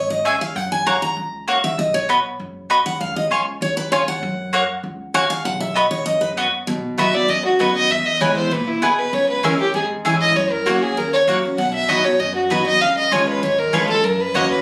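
Captured on a phone in a reverberant club room with compression, this rustic, joyful bluegrass excerpt in B major moves at 196 BPM, opening with a bright, full-bodied picked steel-string acoustic guitar solo with audible finger squeak for the first 6.7 seconds over woody pizzicato upright bass and up-front double-string mandolin stabs, before a dark, close solo fiddle takes the melody at 7.0 seconds with light vibrato, portamento and a sul tasto tone.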